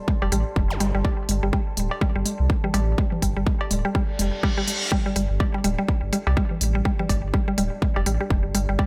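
Minimal techno at 124 BPM in 4/4 with a 59% swing on the 16ths, this short cut from a longer piece feels cool and quirky, sitting on a Gsus4 chord. A punchy, layered electronic kick drum sits up front beside a thick, saturated sub bass with a triangle tone, fast attack and long sustain, and both the bass and the riff pump with sidechain compression. Crisp electronic hi-hats join at 0.3 s, while congas and cowbell with an analog, tape-warm tone sit in the background, carrying studio reverb and digital delay. A woody, round, mallet-like FM pluck repeats a riff on G3, bright and percussive with a short decay and a noise layer, coloured by chorus, phaser and tape echo. Behind it all, a deep, moody sawtooth pad with detuned unison and a sub octave breathes in slowly and lingers with a long release, its dark tone softened by chorus and built-in reverb. Brief electronic effects punctuate the groove, a zap near 0.7 s and a reverse cymbal rising into 4.9 s, all inside a digital ambience.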